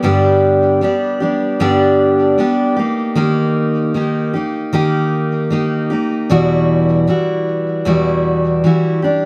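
A picked steel-string acoustic guitar plays alone from the opening, its jumbo body giving a full-bodied, up-front sound with fresh strings and an audible finger squeak. This easy-going, carefree pop fragment moves from G to Eb at 2.8 seconds and settles on Emadd9 at 6.3 seconds, sitting in a moderate studio reverb. The guitar spans the low E string up to G4 across the brief 9.3-second clip.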